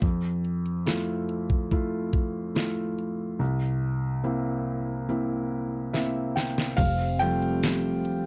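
A straight 4/4 pulse carries this emotional, heartfelt pop ballad, cut from a longer piece, with a pop drum kit of knocking kick, deep snare, bright hi-hat, ride and crash that sounds electronic, layered and tape-warm, re-recorded in a large room yet kept up front. A felt-muted upright piano carries the accompaniment, soft, mellow and intimate, its thin felt and audible action noise giving it a vintage, smooth character as it moves from Fmaj7 to C7. The piano plays a fill from 5.5 seconds, joined by a drum fill at 5.9 seconds, before it takes a brief solo over Fadd9 at 6.8 seconds. At that point a dark, tight French horn section enters in classical style as a second line, alongside a single bowed double bass that is nasal and boxy, with vibrato, portamento and a soft attack. A jingly acoustic tambourine sits close but in the background for a moment, and the whole has the light reverb of a dry, close 1970s-style studio recording.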